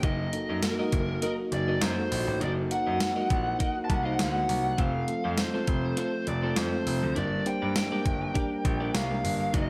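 A clean, 12-bit digital drum machine sets a lightly swung 4/4 groove at 101 BPM, its thumpy kick, medium-tuned snare, hi-hat and tambourine sitting up front with a tape-warm, large-room character, while a clear concert grand piano supplies a polished, deep bass line with short, present notes. Over this, an overdriven, biting lead guitar carries the melody, a mellow tine electric piano heard through its built-in speakers plays accompaniment, a bright, twangy twelve-string electric guitar with lush chorus picks a compressed riff in the background, and a dark, vintage organ-string ensemble holds very quiet sustained chords. This uplifting, romantic 1980s-style pop excerpt, set in light reverb, moves from Ebm/Gb to F at 4.8 seconds and Gm at 7.2 seconds.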